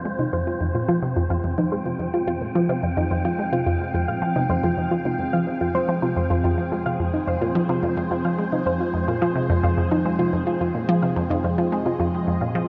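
A squelchy, resonant blip pluck sits up front with a low riff colored by phaser and delay, while soft, round, detuned arpeggios drift through chorus and delay, a swirling, warbling vintage analog pad fades in across the full 12.7 seconds, and a dark, breathy, wind-like tuned noise texture hovers in the huge reverb, giving this fragment of sequencer-driven ambient space music an expansive, mysterious air.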